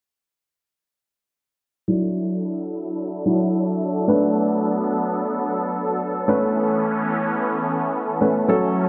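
A dark, mellow baby grand piano and a soft-edged supersaw pad arrive together at 1.9 seconds, opening this carefree, upbeat pop excerpt in a straight 4/4 feel. The piano sits up front with a natural, low-passed tone, playing accompaniment over Dadd9, Bm7 and Aadd9, while the detuned sawtooth unison holds sustained chords and evolves through a filter sweep until both parts stop at 8.9 seconds. A lush hall reverb surrounds them and lends the short passage a roomy glow.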